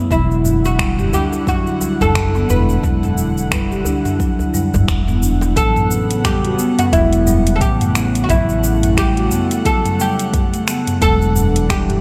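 The plectrum-plucked oud sits up front with a bright, fretless tone, carrying the melody over an analog delay in this peaceful, organic downtempo excerpt at 88 BPM in 4/4 with a gentle sixteenth-note swing, set in A mixolydian. Beneath it, a marimba with soft mallets plays mellow, rounded arpeggios with delay, while a growly pizzicato upright bass on steel strings anchors the low end with sidechain pumping. An airy, breathy pad with a slow attack and long release holds sustained, detuned chords through chorus, also pumping against the beat. The drums pair an overdriven electronic kick with a produced afro-pop kit of finger snaps, metallic hats, shaker and toms, both given studio reverb, while a tight, cracking djembe sits in the background until about 5.5 seconds. The harmony moves from Em9 to A13 at 5.6 seconds and returns to Em9 at 11.0 seconds, all within a dreamy mix soaked in plate reverb.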